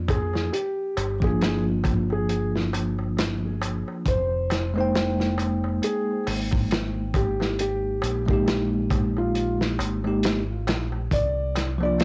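A bell-like tine electric piano with harmonic tremolo and a round, deep dub fingered bass open this brooding, dark trip hop excerpt at a slow 68 BPM in F dorian. They are soon joined by a muted, intimate felt upright piano melody with audible action noise and tape echo, a gritty, punchy breakbeat kit swung on the sixteenths, and a crisp metal-shell darbuka sitting low in the mix. Cassette tape colors the electric piano, upright piano and kit, and light reverb spans the whole recording as the chords move from C9sus4 through Gm7 to Fm11.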